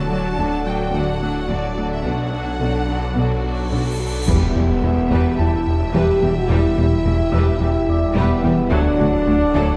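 A vast, relentless hybrid orchestral and electronic film score cut from a longer piece, where a clear, focused violin section carries the melody over a lush second violin line, intense violas, a silky analog string pad with ensemble chorus, tight French horn chords, distant cellos, very quiet double basses, a swirling phased detuned saw bass and a very quiet tine-like synth pluck arpeggio, until a huge, bright cymbal swell breaks into an impact at 4.3 seconds, bringing in a deep, round analog bass riff and, from 5.4 seconds, a dark vintage baby grand piano texture with digital delay, all set in a moderate scoring stage reverb with a dark, warm production.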